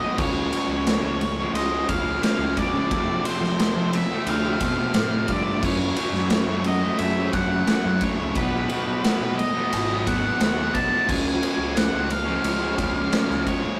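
A steady, straight 4/4 pulse at 88 BPM drives this brooding, dark stretch of quiet-loud alternative rock, cut from a longer piece. The raw garage drum kit sits up front with a boomy kick, a medium-tuned snare, crash and ride cymbals, its saturated, gritty sound rolled off at the top and pumping in a bright stone room. A growling picked electric bass enters at 0.2 seconds, overdriven and direct and amped, beneath a compressed fuzz guitar riff and a very quiet, double-tracked sludgy distorted guitar. Over them an octave-fuzz lead guitar carries the melody with a dark, distorted tone trailed by tape echo, and a very quiet thick fuzz guitar joins the riffing at 5.6 seconds. The chords move from C# through F, F#m and B back to C#, all captured in a rough rehearsal-room recording with tube saturation and a moderate small-room reverb.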